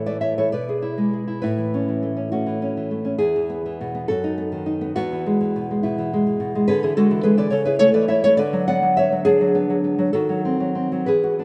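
Sunny and nostalgic, this romantic piece for solo classical guitar moves in a lilting 6/8 at 69 BPM counted in dotted quarters, with uneven beats and a flexible rubato. A nylon-string guitar plays alone throughout the 11.4-second fragment, its acoustic, thumb-plucked tone sitting up front and spanning from E2 to F#5. A touch of tape echo colors the instrument, while a moderate, lush hall reverb lends the sound a spacious bloom. In A major, the harmony wanders from A through E and B7/F# before turning toward E7/D, A/C#, and Bm/D, closing on a D#dim7 at 10.1 seconds that leaves the phrase hanging. The rough home demo mix keeps the performance intimate and unpolished, and the passage is cut from a longer piece.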